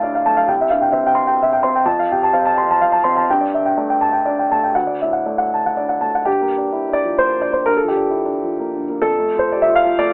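In a rubato 3/4 that drifts between 115 and 133 BPM, this short fragment of a neoclassical minimalist piano piece unfolds with a reflective, melancholic air. A single dark upright piano plays alone throughout its 10.1 seconds, spanning C2 to C6 with a woody, mellow tone that sits up front. Set in G dorian and tuned to A4 = 437 Hz, the harmony moves through C, F, Gsus2 and D before shifting at 6.3 seconds into a second section built on Gm7 and then F. A light reverb surrounds the instrument, while a telephone-like coloring gives the whole recording a narrow, vintage character.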